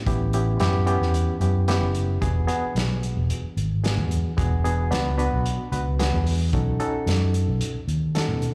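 A straight-eighth groove in 4/4 drives this laid-back, swaggering soul blues excerpt, heard live through a club's PA with small-room ambience and club reverb. Up front, a reedy, barky electric piano carries the accompaniment through A9, E9 and B9, lightly overdriven with fast tremolo and slapback echo, while a dark, round, foam-muted fingered bass sits just as close beneath it. Lower in the mix, an acoustic drum kit of hi-hat, tight kick and medium-tuned snare has a mid-forward sound with a rolled-off top.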